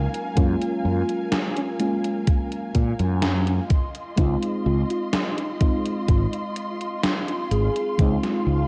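Worn, warbling cassette tape with a drifting pitch wraps this nostalgic, faded vaporwave fragment, set in a digital ambience. An overdriven, thumpy electronic kick and a gated 80s drum machine with crunchy 12-bit sampler grit and a gated-reverb snare sit up front beside a bright fretless bass, while a round, mellow FM electric piano with chorus and tape echo accompanies a lush, woody string section sustaining chords that move from Gbmaj9 to Dbmaj9 at 3.7 seconds. Drifting in the background, a velvety sawtooth synth lead with vibrato and tape echo carries the melody until 8.1 seconds.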